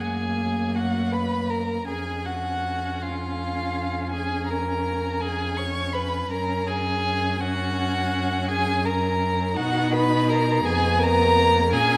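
A moderate scoring-stage reverb surrounds this serene, romantic string quartet passage, a section cut from a longer slow movement in a rubato 6/8. Up front, the first violin sings the melody with a rich tone, vibrato and expressive portamento, while the second violin traces a focused, smooth second line beneath it. The dark viola fills in the accompaniment with its own sliding, vibrato-laden phrasing, and the cello grounds the harmony with a clear, even bass line, all four bowed by single players throughout the 12 seconds.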